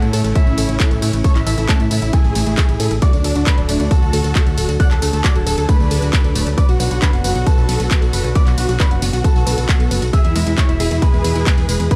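This uplifting trance excerpt drives along at 135 BPM in 4/4 with a straight feel, sitting in B dorian and tuned to A4 = 435 Hz, and its mood is bittersweet and driving over a chord cycle of A, D, Bm and E. A huge, thick supersaw carries the melody with detuned unison layers, a sub octave and vibrato, while a clear, intimate baby grand piano traces a second line higher up in the background, its action noise audible, both trailing dub echo. An analog pluck spins arpeggios with a vintage, warbling character shaped by chorus and dub echo, and a dark studio string section holds soft, floating sustained chords beneath. A round, punchy FM bass anchors the low end, and the synths, piano, strings and bass all pump with sidechain compression. A house drum kit of handclaps, hi-hat, ride cymbal and tambourine runs throughout, and an up-front electronic kick with a tape-warm edge enters at 0.4 s. The production is dark and dry, with little reverb, and the overall mix is loud.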